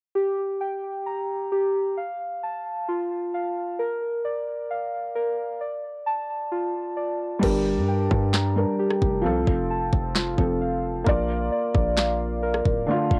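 Dark and hard-hitting, this half-time trap and hip hop cut in G minor moves at 132 BPM in 4/4, drawn from a longer piece. It opens with muted, felt-like synth keys playing arpeggios alone, a soft, intimate tone blending triangle and sawtooth with a noise layer, fast attack and decaying notes, shaded by chorus, a low-pass filter, analog delay and cassette tape color over a Gm, F, Bb, Dm progression. At 7.4 seconds the rest of the band arrives: a felt-muted upright piano adds mellow accompaniment with audible action noise, filtered and taped like the keys. A punchy, heavy 808-style bass with a sine body, noise layer, fast attack and decaying notes drives the low end, while an electronic trap kit brings a knocking kick, sharp snare, rim clicks, handclaps and crash, the hi-hats held out of this section. Everything sits up front in a dry, close home-cassette sound until the cut ends at 13.2 seconds.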